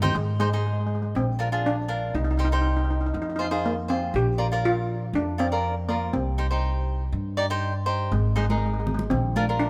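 A shimmering, metallic double-seconds steel pan struck with hard rubber sticks carries the melody in this tense, driving calypso fragment at 120 BPM in straight 4/4, over crisp, up-front picked cavaquinho and a woody pizzicato upright bass on steel strings moving through Ab, Bb, Cm and Fm, while high-tuned, thin-skinned congas open with a drum fill and return at 8.5 s in a light reverb.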